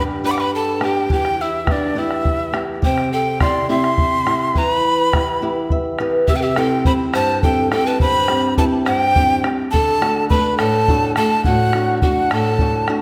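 A bright, reedy cane quena carries a wistful melody with vibrato and a crisp, chiffy attack, while a mellow wooden pan flute plays an unsteady second line beneath it and a dark, boxy flamenco guitar fingerpicks the accompaniment up front. A round bombo joins at 0.4 seconds, and the guitar adds a nylon-string fill from 5.4 seconds as this earthy Andean folk passage in a straight 6/8 moves from G through E minor and C toward D. A wet scoring-stage reverb surrounds the ensemble in this cut from a longer piece.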